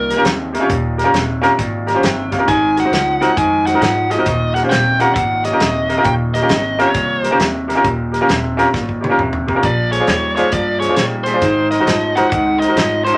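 An electric blues shuffle at 134 BPM in 4/4, swung on the eighths and set in Eb mixolydian, with a gritty, laid-back mood; this short passage is cut from a longer piece. A biting, bright, overdriven lead guitar carries the melody up front, while a second electric guitar through a small old amp plays a low riff with a slightly broken-up, lo-fi, compressed tone. An upright bass, pizzicato and woody with a growly edge, holds down the bottom. A worn, slightly detuned upright piano also sits up front, with brilliant highs, audible action noise and long sustain, and adds a fill at 1.6 seconds. A natural country drum kit recorded in a small room, with a punchy kick and medium-tuned snare, drives the shuffle and plays a fill at 8.7 seconds, as the harmony moves from Eb7 to Ab7, back to Eb7, then to Bb7 and Ab7 under moderate studio reverb.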